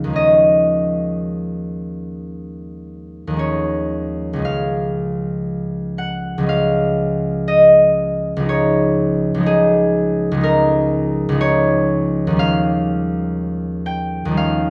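Flowing rubato at roughly 54-62 BPM in 4/4, this peaceful, serene classical excerpt features a solo concert harp, fingerpicked and up front, spanning Db2 to Ab5 with a ringing, warm tone. Its harmony drifts from Eb9sus4 to Db, then Eb9sus4/Db, arriving at Eb9 at 12.4 seconds. Close, detailed microphones capture the instrument in a light reverb.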